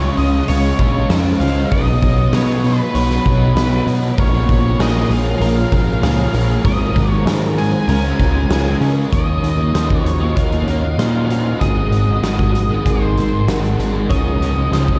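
Dreamy and hazy, this short cut from a longer shoegaze and dream pop rock piece moves at a straight 97 BPM in 4/4 in Db major, its chords drifting from Dbmaj7 through Bbm7, Ab7 and Ebm7 before returning to Dbmaj7. A dark, distorted octave-fuzz lead guitar carries the melody through tape echo, while a thick fuzz guitar grinds out a riff under ensemble chorus. A growling, overdriven picked bass sits heavily in the low end alongside a huge arena drum kit with a boomy kick, a medium-tuned snare and hi-hat, up front in a big, natural room. Further back, a glassy, ethereal FM pad holds slow-swelling sustained chords bathed in its own reverb, and a bright, twangy direct-recorded clean guitar picks arpeggios through analog chorus and tape echo. A very quiet overdriven semi-hollow guitar adds a hollow-bodied riff from 4.2 to 9.1 seconds and returns at 14.1 seconds, all within a dreamy mix soaked in plate reverb.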